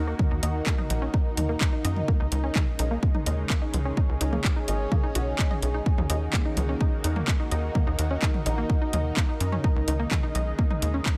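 Lightly reverberant digital ambience frames this dramatic, driving cut from a melodic techno track at 127 BPM in Eb minor, moving between Ebm, Db5 and Ebm7 chords in a straight 4/4. Up front, an overdriven, punchy electronic kick joins at 0.2 seconds alongside a house drum kit of handclaps, bright hi-hats and toms, both carrying overdrive and a small room ambience. A tight sequencer bass, a saturated, wave-folded blend of sawtooth, square and sine with a filter pluck and moving notch, also sits up front, its fast attack and decay pumping with the sidechain. Above it, a detuned unison pluck plays arpeggios through delay, while a thick sawtooth pad with chorus and phaser holds sustained chords in the background. A deep, moody ambient pad with a sub octave, chorus and built-in reverb adds mellow texture, and from 1.3 seconds a very quiet, string-like drone with vibrato brings a tense, bright shimmer.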